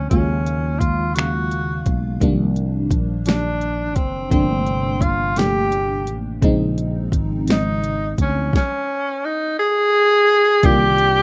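A clear tenor saxophone with vibrato and scooped notes carries the melody in this late-night, sultry slow R&B passage in 6/8 at 57 BPM, over a lush, dreamy FM electric piano with a soft pad layer treated with chorus and phaser, a warm fretless electric bass, and a produced drum kit of finger snaps, smooth hi-hat, soft kick and fat snare, moving through minor eleventh chords until a very quiet tonewheel organ slips in at 10.6 s, all in a small room with a rough home-demo feel, cut from a longer piece.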